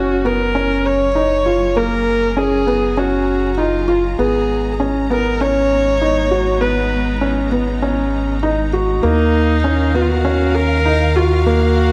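Hopeful and luminous, this electronica excerpt sets an expressive, boxy solo viola melody with vibrato and portamento over a felt-muted upright piano riff with tape echo and audible action noise, a round, wave-folded analog bass, and a clear bowed string section fading in with sustained chords, all in a moderate recital hall reverb.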